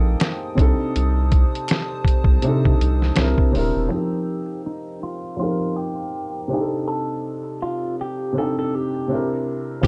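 Lo-fi hip hop with a reflective, hazy mood, this excerpt opens with a woody, slightly detuned upright piano carrying cassette-tape grit, a warbling chorused pad, a saturated sub bass, muffled pitched-down sampler drums and very quiet finger snaps. The snaps drop away at 3.4 seconds, the drums at 3.7, and the pad and bass at 3.9 seconds, when a clean, picked semi-hollow guitar takes the melody through phaser and tape echo under a filter sweep, the drums returning briefly at 9.8 seconds.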